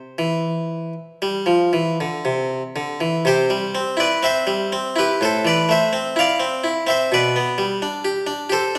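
A solo harpsichord in the Italian style, with a single set of bright, plucked strings placed up front, carries this short classical fragment cut from a longer baroque-style suite movement. The mood is radiant and serene, and the slow pulse in four moves with a free, rubato feel. The instrument spans from A2 up to F5, opening on a C chord before turning to A minor around 5.2 seconds and settling on G over B near 7.1 seconds. A brief opening phrase gives way at 3.2 seconds to a second idea that runs through to the end at 8.8 seconds. The harpsichord sits in a recital hall with a generous, lingering reverb that lets each note ring into the space.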